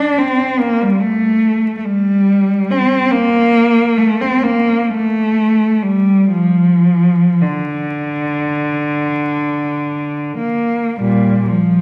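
Classical solo for unaccompanied cello, yearning and meditative, unfolding with free rubato in a slow 6/8 around 25-49 BPM in B-flat major. The single bowed cello sits up front with a rich tone, singing with vibrato and gliding portamento across its range from Bb2 to D4 for the full 11.8 seconds of this fragment from a longer piece. A lingering recital-hall reverb, heard from further back in the room, surrounds the playing, while a vinyl crackle adds an aged patina.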